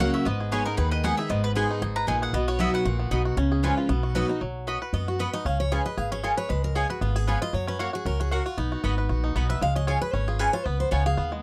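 Swinging at 231 BPM in 4/4, this driving, lively bluegrass piece opens in B major with a round, picked mandolin melody that drops out at 3.1 s, a twangy fingerpicked banjo line, woody mandolin stabs, a thumpy, dark pizzicato upright bass and a full-bodied dreadnought guitar picking along up front, until that guitar steps out for a bright solo with audible finger squeak from 4.4 s as the harmony turns B lydian, set in a dry, close 1970s-style studio sound with light reverb.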